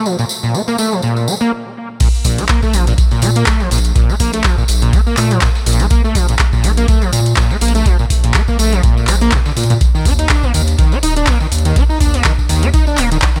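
A 123 BPM groove in 4/4 with a light 16th-note swing drives this trippy, playful acid house excerpt in Bb major. It opens on a squelchy, resonant sawtooth acid riff, up front with overdrive, chorus and analog delay and a sweeping filter, joined at once by a jingly, close acoustic tambourine over a Bb5 chord. After a brief stop at 1.5 seconds, the drop lands at 2.0 seconds: a dry, deep electronic kick, an analog drum machine with metallic hats, handclaps and crash in a small room, and a very quiet, gritty, compressed sampler-style kit adding hi-hat and a medium-tuned snare. A round, dark sine-like bass settles beneath with sidechain pumping as the harmony sits on Bbmaj7(no3) before shifting to Ebmaj7(no3) at 9.8 seconds. The whole mix is bathed in digital ambience.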